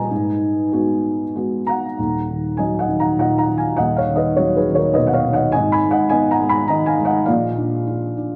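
Brooding and cool, this brief excerpt from a longer classical piece features a lone felt-muted upright piano playing a lyrical solo line in 3/4, with a rubato feel hovering between 92 and 107 BPM in Eb minor. The piano sounds soft, boxy and intimate, its thick felt dulling every attack while it sits close and up front. It covers a broad span from Eb1 up to Cb6, so deep bass tones sit beneath mellow upper notes. An opening passage gives way to a new section at 2.0 seconds, as the harmony moves from G#m7 through Ebm, Badd9/D#, and Abm before arriving on Bb near 7.3 seconds. A moderate concert hall reverb with a 2.4-second tail surrounds the instrument, and the dark production keeps the whole piece shadowy and inward.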